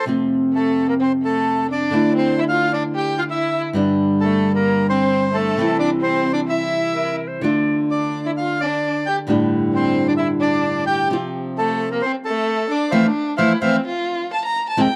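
Passionate and nostalgic, this tango excerpt moves with a rubato feel as a reedy, up-front bandoneon carries the melody over fingerpicked nylon-string guitar, while a single bowed violin weaves an expressive second line rich with vibrato and portamento. A bright, vintage-toned clarinet slips in briefly at 6.9 seconds with a classical-style solo phrase, and the band lands a shared accent at 12.9 seconds on the closing Fmaj7. The sound is dry and close in the manner of a 1970s studio, touched by light reverb and small-room ambience.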